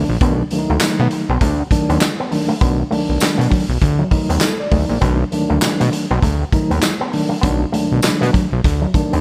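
Energetic and funky, this short cut from a longer piece rides a swung 16th-note groove at 100 BPM in B mixolydian over a B7#9 chord. A fat, detuned sawtooth analog bass with a plucky filter and fast attack sits up front beside a gritty, saturated garage drum kit of punchy kick, snare, hi-hat and handclaps that enters at 0.2 s. A clean, twangy guitar through an envelope filter plays a compressed picked riff, a mellow tine electric piano adds stabs and a fill at 4.1 s, and a jingly tambourine sits in the background, all inside a small room ambience.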